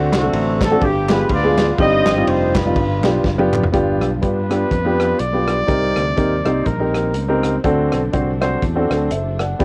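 A home cassette recording with light reverb, this short cut from a longer uptempo gospel piece swings its eighth notes and carries a fervent, solemn mood. An intimate grand piano sits up front with audible action noise, while a growly, punchy fingered electric bass with transformer saturation and a soul drum kit, heard distant and roomy with a tight kick and rolled-off top, play from start to finish. Over the opening, a mellow horn section with light vibrato and soft attack carries the melody through tape echo, joined by a crisp, dry group handclap, and a drum fill leads into the next passage. From 3.7 seconds a very quiet, lush bowed string section holds sustained chords, and a forceful solo trumpet with scooped notes and a smooth top takes the melody from 4.2 to 7.4 seconds. The harmony moves from D7 through G7b9, Cm/G and Cm7 before returning to D7.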